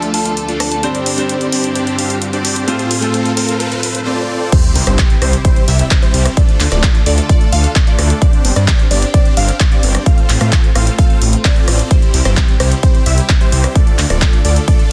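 Anthemic and triumphant, this festival progressive house passage in C major at 130 BPM opens with a build-up in which a bright, brilliant concert grand piano with dub echo, lush detuned supersaw chords under a low-pass filter, and floating bowed strings carrying a filter sweep all pump against the sidechain, while a soft, warbling FM synth bell briefly sounds at the start and a very quiet riser and sub drop play underneath. At 4.5 seconds the piano stops and the drop lands on an impact, as a punchy, layered electronic kick drum sits up front beside the big-room kit's crash, handclaps, hi-hat and rim clicks. A thick, saturated detuned saw bass with chorus enters at 4.8 seconds, and wave-folded unison pluck arpeggios echo in the background over a Dm, Gsus4, F/A, C progression, all within a dense, heavily limited modern master.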